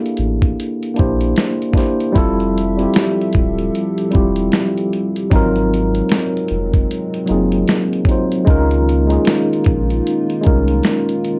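Dreamy and cosy, this lo-fi hip hop clip, cut from a longer piece, sets a worn, slightly out-of-tune tine electric piano, lightly overdriven and softened by cassette tape and plate reverb, up front over a gritty, thumpy sampler-style drum kit and a round, deep dub sub bass, while a dark, nasal analog pad with chorus slips into the background at 2.1 seconds, all bathed in warbling old-tape pitch drift and a small room's reverb across chords moving from C13 through Fmaj9 and Ab13 to Db69.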